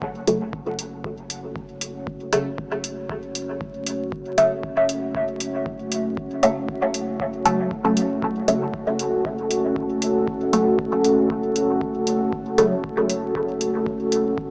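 A gritty, dry hardware sound with vinyl crackle, transformer saturation, light digital ambience and a small-speaker character frames this hazy, cavernous dub techno excerpt at 117 BPM in F# minor, resting on a single F#m chord. Up front, a detuned, wave-folded sawtooth pad sustains dark chords with chorus and built-in reverb, while a muted, nasal, filtered chord stab plucks from 0.3 seconds to 12.7 seconds with phaser and dub echo, both pumping against the sidechain. Beneath them, a round sine-and-triangle bass holds F#1 in the background alongside an analog kick and metallic electronic hi-hats.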